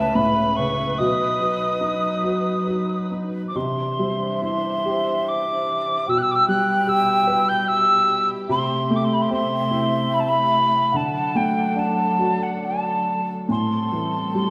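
A haunting, longing Celtic slow air in a rubato 3/4 opens with an airy, hollow metal whistle carrying the melody up front, a crisp-attacked wooden baroque flute adding an expressive, close-miked second line, an intimate, woody upright piano with audible action noise supplying the accompaniment, and a dark, veiled con sordino string section holding sustained chords, all set in a moderate concert hall reverb.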